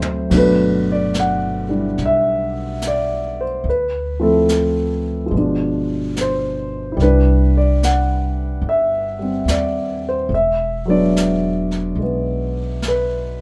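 A dark, mellow concert grand piano sits up front in this intimate, smoky jazz ballad excerpt, its smooth, vintage tone reaching into deep bass with audible action noise, and it comps through a progression that moves from Gmaj7 through Dm9, G7b9 and Cadd9 before landing on E7. Beneath it, a pizzicato upright bass with steel strings gives a woody, thumpy low end. A brushed jazz kit sits distant and roomy, with dark cymbals, a medium-tuned snare and a boomy kick, its rolled-off top keeping it soft behind the others. A short drum fill opens the clip before the trio settles into a gentle swing in 4/4. A wet club reverb lends the whole performance an intimate, smoky atmosphere.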